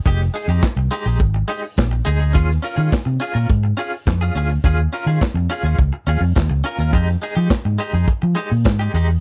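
A vintage drum kit with punchy kick, medium-tuned snare, hi-hat and handclaps drives this driving, danceable disco excerpt in F minor at 105 BPM, entering together with a dark, round fingered electric bass and sitting up front alongside it. A bright, compressed clean electric guitar with tremolo plays picked accompaniment lower in the mix as the chords move from Fm9 to Eb9sus4 at 2.3 seconds and back to Fm9 at 6.9 seconds. The dry, close production has a 1970s studio character, cut from a longer piece and ending at 9.2 seconds.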